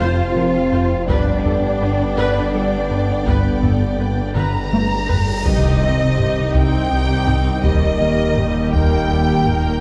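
Brooding and vast, this cinematic passage from a hybrid orchestral and electronic film score moves at a slow 55 BPM in 6/8, settling into C minor at 5.5 s after opening on F and G chords. Lush bowed strings carry it: a dark, focused violin section sings the melody in the background while a rich violin section traces a second line above a smooth, distant viola accompaniment, with woody cellos and a very quiet studio double bass section holding the bass. Beneath them, very quiet horns and clear, lightly vibrato trombones sustain chords alongside a warm, chorused analog pad with a slow attack and long release. The electronic low end pairs a round, mellow analog bass riff with a snarling, distorted sawtooth bass that growls through a moving notch. Heavy-stick taiko drums, compressed and saturated, enter at 1.1 s and break into a fill as a huge, bright cymbal swell builds to an impact at 5.5 s, where the minor chord lands and Eb follows. 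The whole is bathed in a scoring stage reverb for a dark, warm production.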